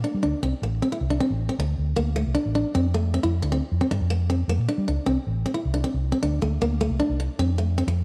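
A picked plugged-in steel-string acoustic guitar, boxy with audible finger squeak, and a dark, round, foam-muted vintage electric bass open this bittersweet, danceable highlife guitar band excerpt in D minor at 103 BPM in a straight 12/8, both held up front in a moderate echo chamber reverb as the chords move from D5 through F5 and Gm7 before the piece is cut off around 8.0 seconds.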